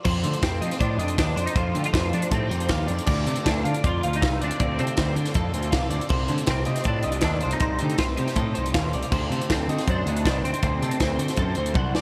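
A crisp fusion drum kit with a high-tuned snare and tight kick sits up front beside a punchy, fuzz-overdriven picked bass in this intricate, restless math rock and midwest emo excerpt at 159 BPM, while a twangy twelve-string electric guitar carries the melody through ensemble chorus and delay, a bright, clean electric guitar picks arpeggios with analog chorus and delay, and a warm twelve-string in the background supplies accompaniment over F13, Dm7, F13/C and D7b9, the whole mix soaked in huge, dreamy ambient reverb until a drum fill at 11.8 seconds.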